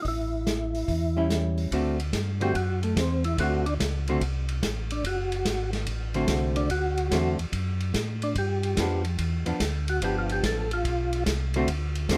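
Soul jazz organ trio music with a bluesy, swinging mood, heard in a short cut from a longer piece. A percussive tonewheel organ carries the melody through a slow rotary speaker and chorus vibrato, its round tone marked by key click and second-harmonic percussion, and from 1.7 seconds it takes a solo over D7 before the harmony moves to G7. Underneath, a second, mellow tonewheel organ plays the bass line up front, also through a slow rotary speaker. A vintage acoustic drum kit of hi-hat, kick, ride and snare sits in a small, pumping room, with dusky cymbals, a punchy kick and a rolled-off top. Entering at 1.2 seconds, a clean, picked hollow-body archtop guitar comps prominently with a shadowy electric tone, and the whole recording is dry.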